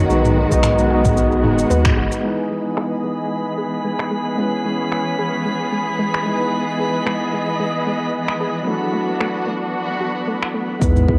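A lightly swung sixteenth-note groove from a tape-warm R&B kit of cabasa, finger snaps and filtered toms carries this smooth, blissful sunset chillout piece, with a punchy, overdriven electronic kick and a deep, round analog bass heard only near the start and again from 10.8 seconds, around a band accent at 1.8 seconds. A clean tine electric piano with tape echo and a veiled, con sordino string section hold the chords from Emaj7 through C#m7 to D69, a filter sweep passing over the strings, while a very quiet, mellow pluck traces arpeggios. From 2.7 seconds a glassy texture of drifting overtones floats high above, all of it set in a moderate spring reverb with the soft character of a home cassette recording.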